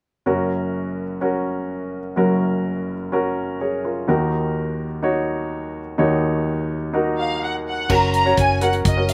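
A straight 4/4 pulse at 126 BPM drives this short, uplifting piece of piano-driven pop in F# major, cut from a longer piece. A grand piano, up front and warm, carries the accompaniment from 0.3 seconds, spanning deep bass notes to the middle register as the harmony moves from F# to D#m. At 7.2 seconds a lush studio violin section takes the melody, bowed with vibrato, soft attacks and expressive portamento, sounding both close and distant in its ensemble blend. When the music turns to F# again at 7.9 seconds, a dark, round, foam-muted electric bass settles on a low F#, and a natural country drum kit arrives with a punchy kick, hi-hat and crash cymbal. The sound is dry and open, with little reverb.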